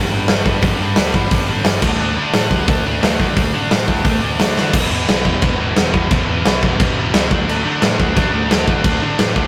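Upbeat and energetic, this punk rock fragment, cut from a longer piece, charges along at 175 BPM in a straight 4/4, with a double-tracked, overdriven electric guitar riff up front moving from G5 to D5 before shifting to E5 and back to D5 after a drum fill at 4.6 seconds. A fuzzy, punchy picked electric bass runs beneath it, while a big acoustic rock kit, loudest in the mix with bright cymbals, a medium-tuned snare and a punchy kick, enters at 0.3 seconds. The rough rehearsal-room recording carries light reverb.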